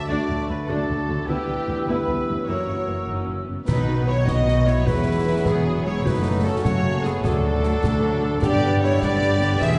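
A distant, reverberant scoring-stage sound frames this triumphant, adventurous heroic film-score passage in a straight 12/8 at 101 BPM, where lush violins carry the melody over a second violin line, mellow clarinet and flute lines, a brief cor anglais phrase, dark horn and warm trombone chords, warm trumpet stabs, ringing harp arpeggios, violas and a woody low string bass, before snare, bright cymbals, bass drum and a round timpani hit join at 3.7 seconds as the chords move from D through F#7 toward B and G.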